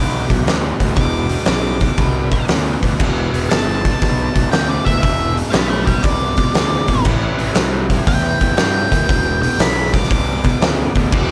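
An octave-fuzz lead guitar takes a dark, distorted solo across this brooding, heavy cut from a longer blues rock power trio and southern rock piece, picked in a high register over a swung 4/4 groove at 118 BPM in E minor. Beneath it, a bright, double-tracked and compressed electric guitar grinds out a low riff, while a growly fuzz bass, direct and amped, anchors the bottom end. An oversized, low-tuned acoustic drum kit arrives at 0.3 seconds, sitting up front with a boomy kick, fat snare, dark cymbals and a saturated, pumping big-room sound. Very quiet in the background, an overdriven tonewheel organ holds thick sustained chords with key click, chorus vibrato and a slow rotary speaker. The harmony rests on Em7, moves to Am7 at 7.1 seconds and returns to Em7 at 9.1 seconds, the whole band framed by a small room reverb.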